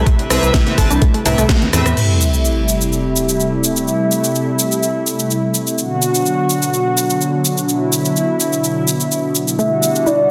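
Progressive house with an expansive, bittersweet mood opens on a thick, airy unison pad whose chorused chords pump against the sidechain, over a deep, rumbling detuned saw bass, a knocking electronic kick, a tape-warm house kit with a cracking snare, punchy sawtooth plucks trailed by digital delay, glossy retro polysynth stabs and very quiet acoustic cowbell, woodblock and congas. By 2.0 seconds the bass, kick, plucks, stabs and hand percussion have dropped out, and an electronic sub drop lands as an impact, leaving the pad and house kit to carry the long second section in a reverberant, dense, heavily limited mix. At 9.6 seconds the plucks return alongside a round, octave-layered synth lead shimmering with chorus and tremolo.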